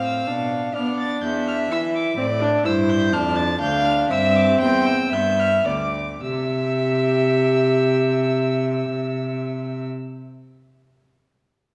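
Spirited and cheerful, this quick classical-period movement for string quartet, cut from a longer piece, moves with a rubato feel and slows down between 1.2 and 6.2 seconds before settling on a C chord. A dark, distant violin carries the high melody over a close, nasal second violin line with an airy bow, while a warm, reedy viola supplies the accompaniment and a rich, up-front cello holds the bass. All four players use gut-string tone in period style, surrounded by a wet scoring-stage reverb.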